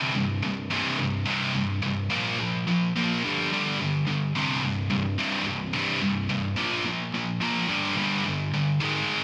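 A scooped, high-gain electric guitar plays alone and up front, double-tracked and picked, with distortion and digital delay, driving an aggressive rock passage of C5, Bb5 and G5 power chords through a lush hall reverb in a bright 1980s-style digital production, in this brief cut from a longer piece.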